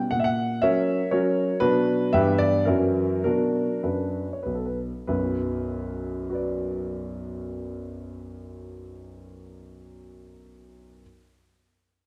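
Dramatic and restless, this short classical-period piano sonatina fragment unfolds in triple time with a flexible, rubato feel. A solo baby grand carries the whole piece, its tone smooth and vintage, placed up front from its lowest bass notes to its upper melody. The harmony circles through F#7/A#, Bm, Em/G and F#7 before settling back on Bm, and the pace holds back noticeably from 0.9 to 5.1 seconds. A second section then begins at 5.1 seconds and runs to 8.8 seconds, as the fragment is cut from a longer work. A wet recital hall reverb and a dark, warm production give the piano a deep, enveloping sense of space.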